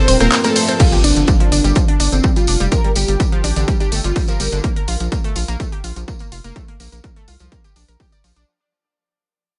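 An overdriven, up-front electronic kick drum enters at 0.8 s, together with a very quiet electronic impact, to drive this cinematic stretch of melodic techno at 125 BPM in G minor, landing on parts already under way: a round analog bass with sidechain pumping, an overdriven techno drum kit of crash, ride, hi-hat, handclaps and rim click, a jingly tambourine, a warbling, detuned sawtooth pluck playing arpeggios through chorus and tape echo, and a fat analog lead melody with ensemble chorus and dub echo that stops at 4.6 s. Meanwhile a clear bowed violin section on a second line, a very quiet deep, moody pad and a resonant ring-modulated drone are heard only briefly at the opening, all within a dry mix that fades out to the end.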